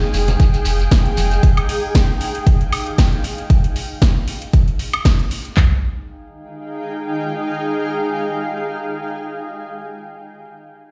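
A swung 4/4 deep house groove sets a moody, smooth tone, with one overdriven, up-front drum layer of deep kick, handclaps and toms and a second overdriven layer of punchy snare, metallic hi-hat and woodblock, while grainy shekere, damped low-tuned congas and a round sine sub bass with sidechain pumping all fall away by 1.4 seconds, the drums drop out near 5.7 seconds, and a cloudy, evolving granular pad, also pumping, carries on alone to 10.3 seconds, the whole mix ringing through a large, bare room.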